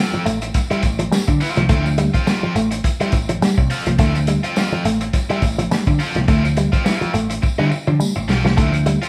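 A 105 BPM funk groove in 4/4, swung lightly on the sixteenths, sets a sly, driving mood in D minor over a Dm9 chord in this short cut from a longer piece. The drum kit sits up front with a dry, muffled, lo-fi character: a tight kick, a medium-tuned snare, hi-hat, and a rolled-off top end, with a fill from 7.4 to 8.6 seconds. A picked, amped electric bass anchors the low end, while a clean, compressed electric guitar run through an envelope filter carries a compact riff in the F3 to A3 range. A biting overdriven guitar adds accompaniment a little further back, with a jingly tambourine in the background and very quiet, bright, high-tuned congas with a damped, thin-skinned sound. The band plays live in one room with a moderate large studio reverb and a layer of vinyl crackle, giving the whole a warm, worn texture.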